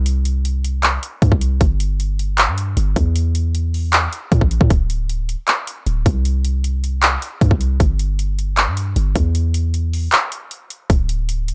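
A deep, boomy 808-style bass with a sine core and a noise layer sits up front, its fast attack decaying into a mellow low end under a menacing, eerie trap groove at 155 BPM in a half-time feel. An electronic trap kit enters at 0.1 s with a hard-clipped kick, metallic hi-hats and handclaps, all pushed forward in a dry, gritty sound with digital ambience. The kick drops out from 10.1 to 10.9 s in this short section cut from a longer piece.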